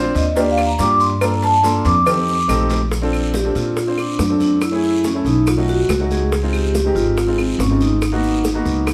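Danceable and lively, this Afro-Cuban jazz clip at 141 BPM sets a mellow, soft-mallet vibraphone with slow motor vibrato on the melody, soloing over the first 2.9 seconds, above a natural-sounding concert grand piano, an up-front pizzicato upright bass with bright, woody steel strings, raspy guiro, very quiet ringing congas, and a background of grainy maracas, tight high-tuned cowbell and bongos and dry claves, all captured live in one room with moderate studio reverb as chords such as Ebmaj7, Bbmaj9 and Dbmaj9 pass by.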